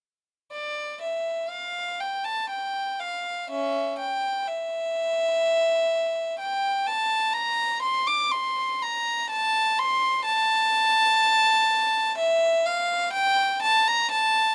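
In a slow, rubato 3/4 at 62 BPM, this flowing, grave classical excerpt sounds like a baroque-style suite movement for unaccompanied violin, tuned to A4 = 441 Hz. A single violin plays alone from 0.5 to 14.5 seconds, ranging from C#4 to D6 with a reedy, nasal gut-string tone, an airy bow and a period-style manner. Close, detailed microphones keep the instrument up front in a dry room, and the passage is cut from a longer piece.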